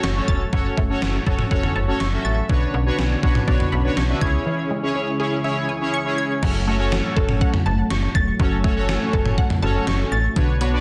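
A bold, fat analog synth brass sits up front, its sawtooth tone wave-folded and ring-modulated with a filter sweep and chorus, carrying the accompaniment between C#4 and E5 in this nocturnal, cool synth-pop excerpt at 122 BPM in F# minor. Beneath it, a slap-like FM bass gives a snappy, metallic attack that then decays, while a gated 80s digital drum machine pounds out a thumpy kick, an overdriven gated-reverb snare, hi-hat, toms and crash cymbal with a sampler-style punch. A juicy, squelchy blip pluck spins resonant, detuned arpeggios across a broad span from D3 to A6, colored by phaser and tape echo. In the background, a vintage string machine with cellos holds dark, warbling sustained chords under an ensemble chorus. The harmony moves from F#m through Bmadd9 and C#m before returning to F#m at 6.4 seconds as a new section begins, all set in a moderate digital room and a dense, heavily limited master.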